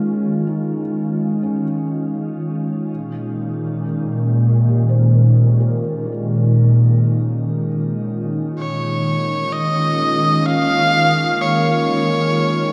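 A glassy, ethereal FM pad sits up front with sustained, chorused chords, shifting from Eb9sus4 to Bbm9 and back in this luminous, serene free-time ambient fragment cut from a longer piece. Behind it, a soft felt-muted upright piano with audible action noise plays mellow arpeggios through shimmer reverb and diffuse delay, fading out and stopping at 9.9 seconds. A bright, intense electric violin enters up front with a lightly vibrato melody at 8.6 seconds, and a nasal drone of moving overtones joins quietly at 9.1 seconds, all set in a vast cathedral reverb.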